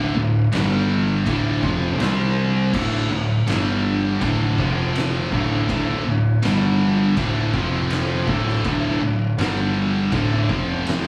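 Brooding and hypnotic, this stoner and doom metal excerpt crawls at 81 BPM in D minor, with an up-front, bright, double-tracked high-gain distorted guitar riffing over two thick fuzz guitars in the background, one dark and one warm, a growling, overdriven picked electric bass, and an oversized low-tuned drum kit with a fat snare, punchy kick, crash and ride that enters at 0.5 seconds, saturated and gritty in a bright stone room, all captured live in one small room with wet ambience as power chords cycle through D5, G5 and F5.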